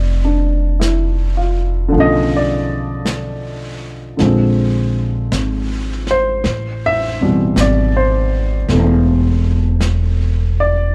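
A close, intimate baby grand piano accompanies this late-night, romantic jazz ballad, spanning B2 to E5 with audible action noise and a short, natural sustain. The harmony opens on a rootless Bbmaj9 and moves to Bm7b5, then Bb9 and Am9, at a slow 53 BPM in 4/4 with swung eighths, tuned slightly high to A4 = 441 Hz. Beside it, an upright bass sits up front, plucked on gut strings with a woody, thumpy tone down low between E1 and B1. A vintage kit joins at 0.8 seconds, played with brushes across snare and hi-hat, its medium-tuned snare muffled and lo-fi with a rolled-off top, as if in a small room. Light reverb and a dark, warm production tie the trio together in this short passage cut from a longer piece, running to 10.9 seconds.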